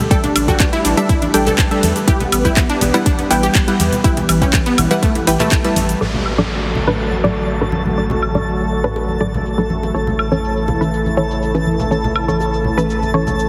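A euphoric, uplifting progressive house excerpt opens on an airy, breathy pad with chorus and vintage sampler grit, lush sawtooth unison pluck stabs with delay, and a layered house kit of low-pass filtered metallic hats, handclaps, cabasa, woodblock, crash and ride. A punchy kick sits up front as a deep, saturated sine sub bass, bright bongos and congas in the background, and a second detuned pluck playing arpeggios with a moving notch join almost at once, the pad, plucks, bass and hand percussion all pumping to the sidechain. The kick and arpeggios drop out before a downlifter arrives at 6.0 seconds with a filter sweep on the pluck, and a twinkling granular texture with an octave-up shimmer enters at 6.6 seconds, all within a lush hall reverb and a heavily compressed, radio-like sound.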